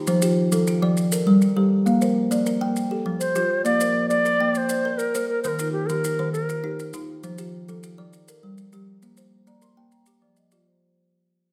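A wet recital-hall reverb surrounds this hypnotic, rippling fragment of a longer Southern African traditional piece, an mbira-style interlocking cycle in Bb major at 134 BPM in a straight 12/8 that fades out across its length. A close, woody kalimba with a bright, ringing thumbnail pluck sits up front, spinning arpeggios against a mellow, round marimba played with soft mallets, while grainy maracas add a quiet shimmer underneath. A reedy cedar flute with vibrato sings a brief melody from 3.2 to 6.9 seconds over the cycling chords, and the marimba closes with a fill at 9.5 seconds.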